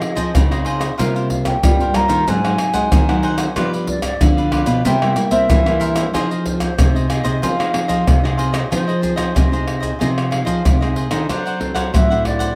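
Light reverb gives this short cut from a longer samba and choro piece a gentle sense of space, its bittersweet, yearning mood carried at 93 BPM in F minor with a straight 4/4 feel. An airy, wooden baroque flute sings the expressive melody with a straight tone and crisp attack, set back at a distance, over a crisply picked cavaquinho and a small, fingerpicked nylon-string guitar. A second nylon-string guitar plays a deep classical bass line in the background, while an up-front percussion section of pandeiro, tamborim, maracas and tight surdo, played with hard hands in a large room, drives the groove as the harmony moves from Fm7 through C7sus4, Ab7 and G7 before a new section arrives at 8.7 seconds and touches D7.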